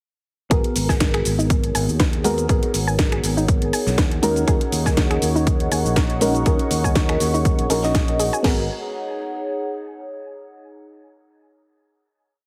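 A punchy, overdriven house drum kit leads this smooth deep house piece at 121 BPM in G# minor, its four-on-the-floor kick, cracking snare and crash joined by programmed hats, shaker and finger snaps with a light 16th-note swing. A bright, growly fingered electric bass plays a syncopated riff beneath a mellow FM electric piano, whose soft, vintage stabs carry chorus, phaser and dub echo. A gentle pluck repeats a 16-step arpeggio in the background, a lo-fi tape-like pad enters at 1.4 seconds, and a deep, detuned analog pad joins at 4.5 seconds before a G#m9 final chord rings out to 10.4 seconds, all under a heavily compressed, radio-like sheen.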